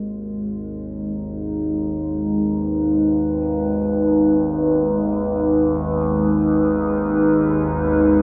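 Desolate and cavernous, this brief dark ambient drone in G# minor drifts in free time, cut from a longer piece and resting on a single G#m chord. Up front, a deep, moody analog pad holds sustained chords from G#3 to B4 across the full 8.2 seconds, its detuned square, sawtooth and triangle waves thickened by a sub octave and colored with chorus and phaser. Beneath it, a quieter drone sits low between G#1 and D#2, its nasal, resonant tone built from sawtooth and sine with moving overtones sweeping through the sound, softened by chorus and its own reverb. The drone fades in gradually across the whole excerpt, and both parts have slow attacks and long releases. A wet cathedral reverb with a 5.0-second decay surrounds the whole recording, giving it a vast, hollow space.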